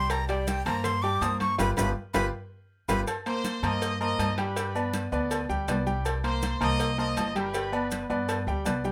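Lightly reverberant and up close, this fiery, driving salsa excerpt moves at 161 BPM in C minor with a straight 4/4 feel. A breathy, bright metal jazz flute with vibrato and a crisp, chiffy attack carries the opening melody until 3.0 seconds, while the band punches in with accents and a drum fill just before the handoff. From 3.3 seconds a brilliant, tight trumpet section takes over the tune, present and pop-styled with its own vibrato, playing until 8.1 seconds. Underneath, a clear, intimate baby grand piano with audible action noise comps over chords moving between Cm7 and G, and a woody, thumpy upright bass with gut strings plays pizzicato at the front of the mix. Congas with a damped, thick skin, a tight, high-tuned vintage cowbell, ringing agogo bells and timbales heard in a small room, and grainy maracas fill out the percussion, with the congas, bells, timbales and maracas sitting in the background.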